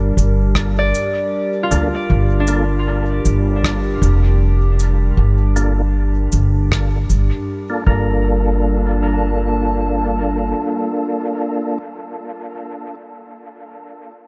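Meditative and deep, this ambient dub fragment in G minor moves at 78 BPM in a lightly swung 4/4, resting on a Gm7 chord beneath a warbling, detuned, lo-fi pad that holds sustained chords through 12.1 seconds. A woody, thumpy pizzicato upright bass sits up front, a tape-kissed electronic kick stays in the background, and brushed cabasa and rim click, sent into dub echo, drop out at 7.3 seconds. Bright, fingerpicked concert harp arpeggios and mellow, round tonewheel organ stabs with key click and fast rotary speaker both carry low-pass filtering and dub echo, while filter sweeps run across the bass, organ and harp until 8.2 seconds, inside a light reverb and studio ambience.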